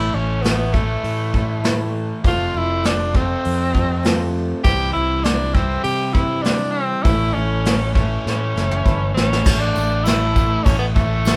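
Nostalgic and warm, this short cut of folk rock with a heartland rock edge moves at a straight 100 BPM in 4/4, with the chords moving from A to F to C and back to A. A bright, vintage-toned tenor saxophone carries the melody up front in a pop style, colored by vibrato and scooped notes, while a dark, round and punchy fingered electric bass anchors the low end. Behind them, a full-bodied, shimmering twelve-string acoustic guitar with octave-doubled strings and a raw, overdriven, double-tracked garage guitar riff sit in the background, and a reedy, lightly overdriven electric piano heard through its built-in speakers stays very quiet. A brushed drum kit enters at 0.4 seconds, sounding roomy and distant yet up front, with a medium-tuned snare and tight kick. It plays a fill starting at 8.3 seconds, and a jingly, close tambourine joins at 9.8 seconds. The whole band plays live in one studio room with moderate reverb, giving the recording a natural, unified feel.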